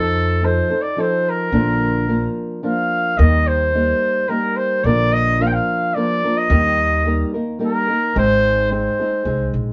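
A mellow trumpet carries the melody in a classical-style solo, sitting up front yet with a distant, roomy quality that gives this festive, proud mariachi passage a ceremonial air. Beneath it, a dark, fingerpicked nylon-string guitar supplies small-bodied accompaniment in a lilting triple metre, while a woody upright bass with steel strings plays pizzicato at the bottom of the arrangement. All three parts begin together, and the trumpet drops out at 9.5 seconds, just before the guitar and bass finish at 9.7 seconds. The harmony moves from F7 through Bb and Eb before settling on Ab. The trio sounds as though it is performing live in one room, framed by moderate studio reverb and a softened top end, in a short section cut from a longer piece of Mexican folk music.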